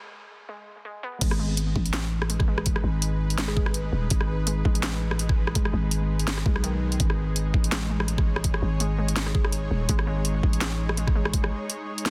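A swung half-time groove at 166 BPM drives this tense, spacious drum and bass passage in G# phrygian, where a lo-fi, warbling pluck plays arpeggios in the background during a filtered build-up before the drop at 1.2 s brings a knocking, overdriven electronic kick, a kit of cracking snare, bright hats, rim click and crash cymbal, and a growling, buzzy 808-style bass up front, while a nasal, string-like drone with vibrato holds sustained chords and a woody mallet-like pluck sounds one very quiet note twice, all inside a dense, heavily limited, dry master.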